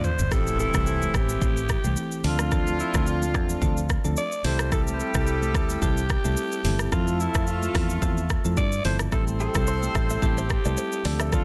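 A quick drum fill and a background noise sweep open this sultry, mellow afrobeats excerpt in A minor at 109 BPM, landing on an electronic impact at 0.3 seconds as a round, foam-muted fingered bass and a tight horn section with octave doubling settle in over Am7, Dm7, C6 and Fmaj7. A breathy, raspy alto saxophone with vibrato and delay carries the melody above soft, chorused electric-piano-like synth keys, while an up-front produced kit with a deep kick and dark hats drives the swung groove and high-tuned congas ring quietly beneath. At 9.1 seconds a bright, clean, picked electric guitar riff slips in very quietly, all within a dense, heavily limited modern mix with digital ambience.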